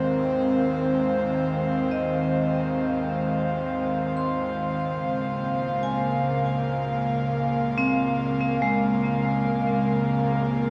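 A vast, echoing cathedral wash surrounds this serene, spacious ambient fragment in free time, where an airy, breathy pad holds sustained chords from the start, moving from Fm7 to Bbm7 at 4.8 seconds, while a metallic, ringing vibraphone struck with hard mallets enters at 1.9 seconds with delayed, shimmering arpeggios sitting lower in the mix than the pad.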